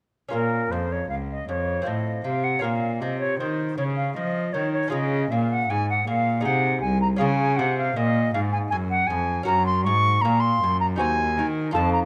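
A straight 3/4 at 79 BPM carries this grave, solemn baroque-style sonata movement in Bb minor, a fragment cut from a longer piece. A pure, metallic silver concert flute sings the expressive melody up front with vibrato and a crisp attack, beside a rich, reedy bowed cello with gut-string, period-style tone and light vibrato. A delicate fingerpicked lute with double strings sits lower in the mix, all three playing from 0.3 seconds as the harmony moves from Bb minor through Db and Gb to a diminished chord at 11.0 seconds, within light reverb.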